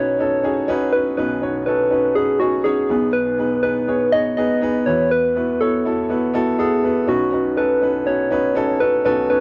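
A straight 4/4 pulse at 122 BPM carries this short, hopeful pop fragment in B mixolydian, cut from a longer piece. A soft struck synth lead sings the melody throughout, its round, keys-like FM tone striking fast and decaying, colored by chorus, tremolo and vibrato. Beneath it, a clear upright piano plays accompaniment for the full 9.4 seconds, sounding woody, boxy and up front. The harmony moves from Badd9 to G#m/B, then to Esus2 at 4.9 seconds, before settling back on Badd9. The close, dry sound recalls a 1970s studio, touched with light reverb.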